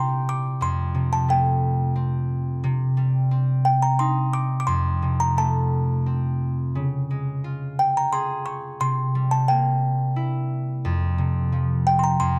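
A gentle, straight three-beat sway carries this tender, sleepy children's lullaby, which is cut from a longer piece and runs as a single section of about 12.4 seconds. A large, delicate music box sings the tinkling melody in a high register, close-miked, full and up front, its plucked tones slightly out of tune and touched with plate reverb. Beneath it, a concert harp provides the fingerpicked accompaniment throughout, its acoustic strings bright and ringing and also placed close to the listener. The harmony drifts from C through Fadd9, Cm, F, Db and C7 before settling on an open F5 chord. A small, intimate room ambience and a dark production wrap the two instruments in a soft, drowsy glow.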